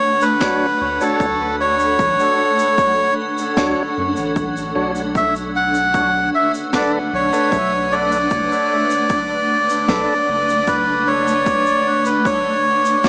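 Deep and spacious, this ambient dub passage, cut from a longer piece, moves at 76 BPM in a straight 4/4 in B minor, drifting from Dmaj7 to Bm7 at 5.2 seconds and back to Dmaj7 at 11.5 seconds. Up front, a reedy, breathy melodica carries the melody between A4 and F#5, close-miked and nasal with its plastic-case character, trailed by dub echo. Beneath it, a granular cloud pad holds blurred, evolving chords built from detuned sine unison, with slow attack, long release and its own built-in reverb. In the background, a lightly overdriven tonewheel organ adds stabs with vibrato, key click, a stopped rotary speaker and dub echo. A punchy, layered electronic kick with overdrive sits under a natural small-room snare played with brushes and a shaker, its top rolled off, while a soft, round sub bass of triangle and square wave enters at 0.8 seconds. The whole mix sits in a huge ambient reverb with a 3.9-second tail and carries a small-speaker sound.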